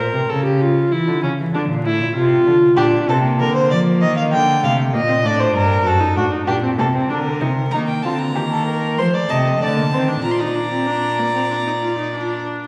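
Classical baroque-style fugue for string quartet at 96 BPM in 4/4, solemn and driving, moving from G minor to Bb major at 7.7 s, where a rich, close violin melody enters high above a dark, nasal second violin (in from 2.8 s), a warm viola and a full-bodied cello bass, all four bowed by single players in period style with reedy gut-string tone, set in a wet recital hall reverb with vinyl crackle in this excerpt from a longer piece.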